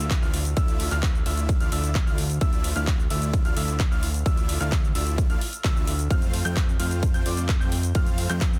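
Anthemic and emotional, this short festival progressive house cut in D minor moves at 130 BPM in a straight 4/4, drawn from a longer piece. A punchy, overdriven electronic kick sits up front with studio reverb, alongside a layered big-room dance kit of handclaps, shaker and metallic hi-hats, also in reverb. Huge, lush supersaw chords built from detuned sawtooth and square waves with a sub octave play a bright, sustained riff, pumping against the kick and trailing dub echo. Underneath, a fat, thick analog bass with detuned sawtooth tone and an evolving filter sweep pumps low, while a clear but boxy baby grand piano plays arpeggios high in the background with the same pumping and dub echo. A barely audible electronic downlifter passes in the opening 2.4 seconds, and the harmony moves from Dmadd9 to F at 6.1 seconds inside a dense, heavily limited modern master with digital ambience.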